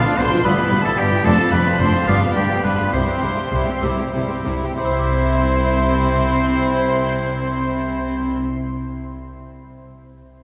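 Brilliant and lively, this short 6/8 baroque-style concerto fragment in C major, moving at 62-76 BPM in dotted quarters and slowing between 0.4 and 4.8 seconds, sets a clear, distant solo oboe alongside a rich, vibrato-laden violin melody, a focused second violin line in the background, a bright plucked harpsichord, smooth viola and cello sections, and a dark, expressive double bass with portamento entering at 0.2 seconds, all bathed in the long, wet reverb of a cathedral as the chords pass from Em/G through Dm7/F and G7 to C.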